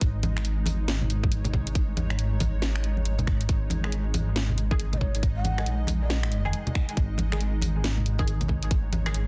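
An excerpt of cavernous, dark deep dubstep at 138 BPM in a swung half-time feel opens on a rumbling detuned saw bass up front, a tight electronic kick, a garage kit of finger snaps, hi-hat and cracking soft-clipped snare, and a blurred, evolving granular cloud pad carrying its built-in reverb, with bright dry congas joining in the background a moment later. Muted, phased dub chord stabs with echo enter at 3.8 s, and a breathy, hollow shakuhachi with vibrato and echo drifts in at 4.9 s, all over a dense, heavily limited master.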